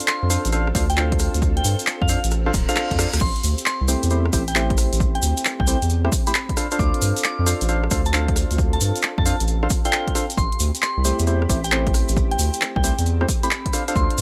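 A very quiet, silky string machine holds dark chords from the start, alongside hollow, percussive organ stabs with subtle chorus and tape echo, a punchy, overdriven analog drum machine of handclaps, hi-hat, rim clicks and crash, and a grainy, bright tube shaker. This gives a moody, skippy two-step garage groove cut from a longer piece. A pure, warbling FM bell carries the melody through chorus, phaser and dub echo, a deep, round sub bass sits up front, an overdriven electronic kick arrives at 0.7 seconds, and a drum fill with a background reverse cymbal leads into the shift from Dm7 to Am7 at 3.2 seconds, all in a dry sound.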